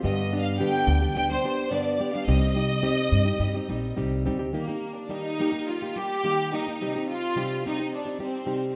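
Proud and romantic, this short excerpt of Mexican folk music in the mariachi tradition moves at 107 BPM in a straight 4/4, starting in C minor and brightening to E-flat major from 4.5 seconds. A studio violin section carries the melody, its rich, focused ensemble sound bowed with vibrato and placed up front. Beneath it, a fingerpicked nylon-string guitar supplies classical-style accompaniment with a warm acoustic tone, also close and present. A woody, pizzicato upright bass with steel strings anchors the low end until it stops at 4.5 seconds, leaving violins and guitar to continue together. The whole performance sits in the wet, spacious reverb of a scoring stage, which lends a cinematic sweep to the romance.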